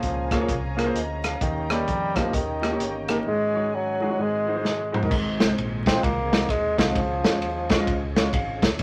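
Uptempo gospel in Db major at 130 BPM, swung in 4/4 with an uplifting, jubilant spirit, heard in this short cut from a longer piece. A bassoon carries the melody up front in a classical style with light vibrato, while a clear concert grand piano with deep bass supplies the accompaniment throughout. Behind them sit an overdriven tonewheel organ, gritty and thick with key click, percussive attack, chorus vibrato and a slow rotary speaker, and a dark studio string section holding soft, bowed sul tasto chords until 5.1 seconds. A punchy fingered electric bass anchors the low end, and an acoustic soul drum kit sits up front with a pumping room sound, dark cymbals and a rolled-off top, playing a fill from 4.6 to 5.1 seconds. The harmony moves from Bbm7 through Eb7 and Ab7sus4 to Ab7, then resolves to Ab and Db in the second section, all set in a small room with vinyl crackle.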